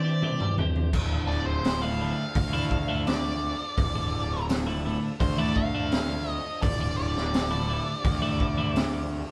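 A roomy, live-sounding clip of mysterious, trippy psychedelic rock at 84 BPM in D minor, where a raw garage drum kit with a high-tuned snare and punchy kick opens with a fill before a round, overdriven fuzz bass enters at 0.9 seconds under a dark octave-fuzz lead guitar solo, a twangy, phased twelve-string electric guitar riff, and a reedy tonewheel organ holding chords through slow rotary speaker and chorus vibrato in the background, moving from Cadd9 to Dmadd9.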